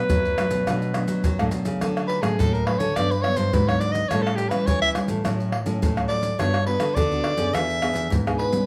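A sunny, joyful stretch of samba and choro, cut from a longer piece, moves in a straight 4/4 feel. A bright clarinet with a soft attack and a vintage, classical-style tone opens up front, holding a brief solo line around B4 over a Bm7 chord before stopping at 1.5 seconds. Two fingerpicked nylon-string guitars in a warm, classical manner run throughout, one supplying chordal accompaniment and the other carrying the bass, with an audible finger squeak on the bass guitar. Maracas, surdo, pandeiro and tamborim sit up front with a tight surdo, soft hands and a band-limited, vintage colour. From 2.1 seconds a breathy soprano saxophone takes the melody in a clear, jazz-style solo, using light vibrato and scooped notes, while the harmony moves through Dmaj7, Gmaj7, A7, A6 and E7. A moderate large-studio reverb gives the ensemble a sense of space.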